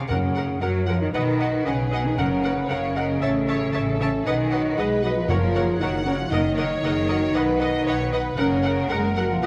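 Cinematic orchestral music in F# major at 116 BPM in a straight 4/4, this brief excerpt from a longer piece feels adventurous and soaring. A dark, distant French horn section holds sustained chords that sit most prominently in the balance, while lush bowed violins with vibrato carry a high melody above a second violin line and an expressive viola accompaniment. Underneath, a bright chamber cello section and a rich, even double bass section share the bass, and the harmony moves from F# through B and A before returning home. In the background, an airy, hollow silver flute and a clear solo clarinet add their own second lines, and timpani with medium mallets on calf heads sound close and dry on F# until about 7.1 seconds. A moderate scoring stage reverb gives the full orchestra a spacious, roomy finish through to 9.5 seconds.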